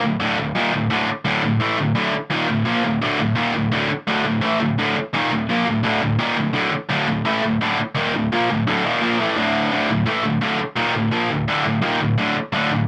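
Bright, double-tracked and up front in a light reverb, this relentless, aggressive metal fragment at 170 BPM in straight 4/4 features a lone high-gain electric guitar, distorted and picked, opening on a D5 chord in D minor with tuning at A4 = 441 Hz, moving into a new section at 9.7 s and breaking off at 12.8 s.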